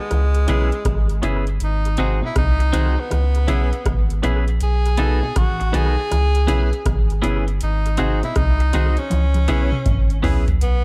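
A breathy, whispered tenor saxophone carries the melody through this meditative, serious roots reggae excerpt in C# minor at 80 BPM, its soft attack and light vibrato trailed by tape echo over a swung 16th-note feel and chords moving between C#m7, G#7 and B7. Beneath it, a round, up-front sub bass and a booming analog drum machine with a deep kick, metallic hats, rim clicks and toms sit in an echo-heavy, dry mix, with analog delay on the drums and a fill from 9.1 to 10.6 seconds. A twangy, compressed clean electric guitar with warbly pitch drift and tape echo, a background electric guitar playing arpeggios through an envelope filter, and polished concert grand piano stabs with audible action noise fill out the arrangement.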